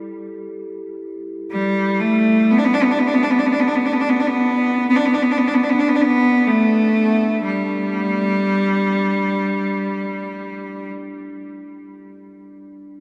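Peaceful and spacious, this free-time meditative world piece in G major pentatonic unfolds in a vast, echoing space, a fragment cut from a longer work. A bronze singing bowl rings softly in the background for the full 13.0 seconds, its metallic tone carrying slow beating from a suede striker. At 1.5 seconds a single bowed cello enters up front with a bright, biting melody, intense yet distant, colored by light vibrato and tape echo before it falls silent at 10.9 seconds.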